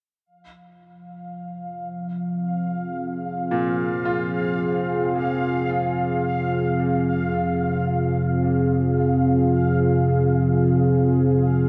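A sweeping, resonant pad of detuned sawtooth tones carries sustained chords up front in this dark, ominous ambient fragment from 1.1 s, while a mellow, bubbling texture of random filter steps hovers high from 0.3 s, a deep, rumbling drone fades in beneath from 2.4 s, and a brilliant grand piano adds delayed arpeggios from 3.5 s, the whole set in a huge, wet reverberant space.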